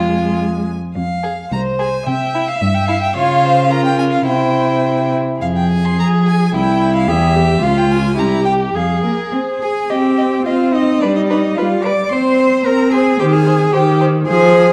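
In a quick 2/4 at roughly 101-112 BPM, the pulse bends with rubato, giving this classical-period string quartet movement a stormy, restless drive. It sits in F minor, passing through chords such as C, Db and C7 before turning to C minor at 9.9 s, where G7 and Abadd9/C colour the new passage. The first violin carries the melody with smooth, even vibrato, while the second violin plays a second line with soft attacks, portamento and an expressive touch. The viola supplies a focused accompaniment that sounds distant yet up front, and the close cello anchors the bass, each bowed by a single player with vibrato and a rich tone. A wet recital hall reverb and dark production frame the quartet, with a faint mains hum underneath, and the passage is cut from a longer piece, stopping at 14.7 s.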